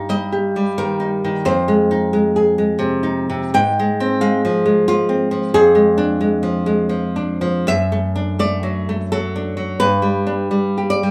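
A solo nylon-string guitar, woody and fingerpicked with the warm character of old strings, sits up front in a small room with moderate studio reverb, playing a passionate, melancholic romantic classical piece in a rubato 3/4 at 73-92 BPM, tuned to A4 = 444 Hz and ranging from F2 to G5 as it moves from Eb/G through Fm7 and Ddim/F to D/F# before reaching G at 9.8 seconds.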